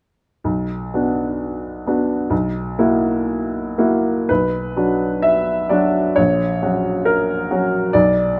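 A clear upright piano opens the fragment at 0.4 s, playing alone in a romantic classical character piece with a stormy yet bittersweet mood. Its tone is woody and open, set up front by close, detailed microphones that catch every note from deep in the bass up to the middle treble. The phrasing moves in a flexible rubato over a steady two-beat metre, giving the music a restless, searching feel. At 4.3 s a second section begins, returning to the opening harmony before shifting to a dominant chord over A sharp in the bass that leaves the line unresolved. A light reverb adds a little air around the piano, and the passage breaks off at 8.4 s as a slice of a longer work.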